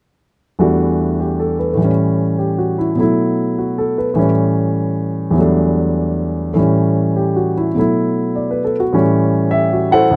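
A solo grand piano enters at 0.6 s and carries this short solo jazz passage on its own until 10.2 s, setting a relaxed, sophisticated mood. The tempo sits at 101 BPM in 4/4, with a swung eighth-note feel that keeps the phrasing loose and easy. Over the span of a single section, the harmony cycles through Em11, A7, B7sus4 and A7 twice, with the piano ranging from D2 up to F#5. The instrument sounds warm, intimate and natural, placed up front with the mechanical noise of its action audible. A light touch of reverb colours an otherwise dry, close recording with a 1970s studio character, and the passage is clearly lifted from a longer performance.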